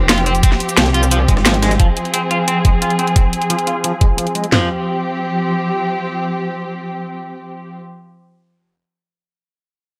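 A straight 4/4 groove at 176 BPM drives this short cut of dark, technical drum and bass in F minor, with a mechanical, dark mood. Two layered electronic drum and bass kits sit up front. One delivers a knocking kick, cracking snare and toms, while the other is overdriven and adds bright hats, rim clicks and cabasa. A very quiet, gritty sampler-style breakbeat kit with a high-tuned snare briefly joins from 0.1 to 1.8 seconds. A metallic, wobbling FM bass with chorus and saturation punches through only in the opening moments. A twangy, slightly broken-up electric guitar picks arpeggios through a low-pass filter sweep and digital delay. Up front throughout, a veiled, con sordino string section holds bowed chords with vintage 12-bit sampler grit and sidechain pumping, moving from Fmadd9 to Fsus2 at 4.5 seconds and carrying on alone until 7.8 seconds inside a light digital ambience.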